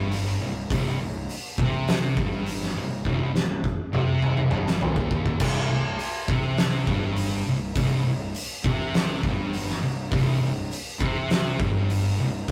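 A pair of thick fuzz guitars open this heavy, brooding stoner and doom metal excerpt in C minor at 102 BPM: one distorted and up front, the other very quiet and warm, over a growly, overdriven fingered bass sitting in the background. An oversized, low-tuned acoustic kit joins almost at once with a punchy kick, fat snare, dark cymbals and toms, sounding gritty and saturated in a big, pumping room. A drum fill from 3.1 to 5.4 seconds carries the riff from a Cm chord onto C5, all captured as a rough rehearsal-room recording with light reverb.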